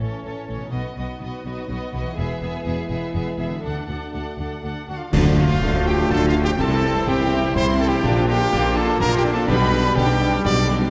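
Heard through a moderate scoring-stage reverb, this triumphant, soaring adventure-film cue in 3/4 at 124 BPM opens with a lush violin melody over a woody second violin line, expressive violas, a dark French horn section, ringing concert harp arpeggios and a rich bass of cellos and double basses; from 4.9 s a close-miked trumpet adds clear stabs and a pure-toned flute group joins, and at 5.1 s, as the harmony turns to D minor, a bright crash of clash cymbals and concert bass drum accents the arrival of a distant clarinet line, trombone chords, tuba and a quiet, dry drum part of snare, cymbals and bass drum.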